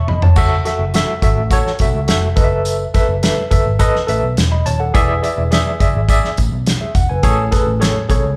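A barky, lightly overdriven tine electric piano with fast tremolo sits up front in this urgent, passionate 1960s-style soul excerpt, moving through F#m7, B7sus4/F#, E7 and Amaj7 over a fat-snared soul drum kit that opens with a short fill, a round, foam-muted picked bass and a jingly tambourine in the background, all played live in one room with moderate large studio reverb.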